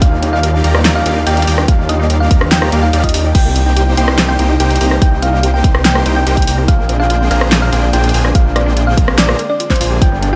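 A half-time 4/4 pulse at 144 BPM drives this emotional, bittersweet future bass excerpt, where a punchy, up-front electronic kick and a pop drum kit with fat snare, hi-hat, rim click and crash cymbal anchor a thick, chorused detuned saw bass, while sidechain-pumped supersaw chords ring huge and bright, a round, tine-like thumb-piano-like pluck carries the melody with chorus and delay, a very quiet unison pluck adds arpeggios from 0.1 s, and a soft, breathy pad sustains over Ebmaj9, Cm7 and Bb13 in a dry mix.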